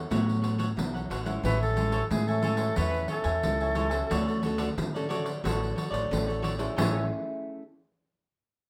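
Joyful and festive, this short samba-choro fragment opens with a fleeting, dark clarinet note in the distant background, then a bright, reedy wooden flute enters at 1.4 s with an airy, close-miked second line over crisp picked cavaquinho, fingerpicked classical nylon-string guitar, a woody pizzicato upright bass up front and a jingly, distant pandeiro, as the harmony moves from Amaj7 to Dmaj7 in a moderate studio reverb.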